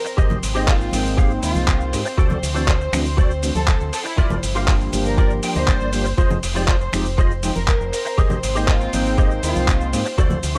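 A dark, distant violin section opens this sensual, cosmic nu-disco passage, its expressive vibrato melody roughened by vintage 12-bit sampler grit and trailed by analog delay, while a reedy chamber string section sustains gut-string chords in the background with a sidechain pump. A bright, twangy clean electric guitar, recorded direct and thickened by ensemble chorus, plays a picked riff from the start and adds a short fill at 5.2 seconds. Almost immediately the groove arrives: a thumpy, up-front electronic kick, a dusty sampler-style kit of finger snaps, handclaps, hi-hat and shaker, and a round, punchy fingered bass pushed through an envelope filter. Thick-skinned congas sit quietly in a small room behind them, and mellow sawtooth synth brass with a soft attack and filter sweep enters at 0.5 seconds to sustain chorused, pumping accompaniment. The harmony drifts through Abmaj7, D7, Gm7 and Fm7 chords, and the whole fragment has a dry, gritty hardware sound under digital ambience.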